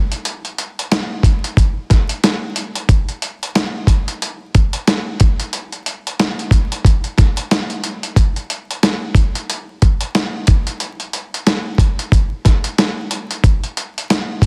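A dusty, soul-flavored sampler-style drum kit carries this moody, tough hip hop excerpt, entering at 0.1 s and running to its end at 14.5 s. The kit of kick drum, snare drum and hi-hat sits up front, with a thumpy kick, a medium-tuned snare and a gritty, compressed character pushed further by overdrive. It sounds as though it was re-recorded in a small room, and its samples keep their natural pitch. The groove moves at 91 BPM in 4/4 with a 58% swing on the sixteenths, giving it a loose, head-nodding feel. A light reverb, a dense and heavily limited modern master, and a layer of vinyl crackle wrap the beat in a worn, crate-dug texture.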